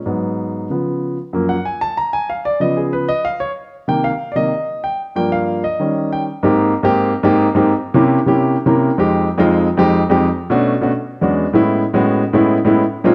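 A warm grand piano plays alone and up front in this lively, sophisticated jazz piece, cut from a longer work, moving in a straight 4/4 through rich harmony such as Abm7, Gbmaj7, C7b9, Fm9 and a closing Amaj9. It carries a solo line through the opening 6.4 seconds, then moves into a second section with a brief fill at 8.5 seconds. Moderate reverb from a large studio surrounds the piano, and the overall production is dark.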